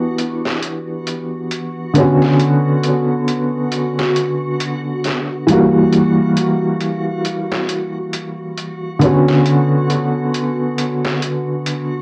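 Hypnotic and brooding, this 12-second trip hop excerpt at 68 BPM in B harmonic minor, tuned to A4 = 437 Hz, puts a boxy, felt-muted upright piano up front with audible action noise, tremolo and tape echo over a gritty, pitched-down sampler-style kit of filtered hi-hat and snare entering at 0.2 s, while a dreamy, detuned, granular backwards swelling texture glows bright beneath, the cassette home recording moving through Em7, Bmadd9/D, F#7b9 and Bmadd9 in a moderate studio reverb.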